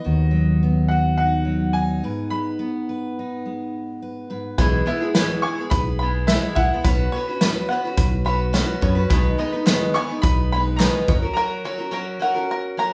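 A bright, woody upright piano carries the melody from the opening moment over a fingerpicked steel-string acoustic guitar, whose finger squeaks catch the ear, while a dark, round fingered electric bass sits up front beneath them. This uplifting, warm indie folk excerpt moves in a straight 4/4 feel and builds its arrangement steadily, with a short break before the second section. At 4.6 seconds a boxy archtop guitar with old strings joins alongside a twangy, percussive banjo playing arpeggios and a natural country drum kit with a tight kick and medium-tuned snare. A very quiet, jingly tambourine adds sparkle, and crisp group handclaps appear briefly from 9.7 seconds. The whole band sounds like it is playing live in one room, bathed in a short studio reverb, and the piano, archtop and banjo carry on into a closing break after the drums and bass have stopped.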